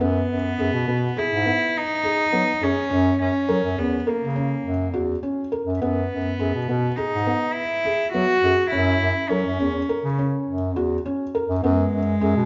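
Moving in an uneven 5/4 at 103 BPM with a straight feel, this hopeful, playful chamber excerpt in F# mixolydian sets a rich, reedy gut-string cello carrying the melody up front beside a smooth-topped bass clarinet holding the bass line, while a felt-muted upright piano adds dark, intimate arpeggios with audible action noise, all alternating between Emaj7/F# and F#7 before settling on F#sus24 at 11.6 seconds, bathed in a recital hall reverb with a softened top end.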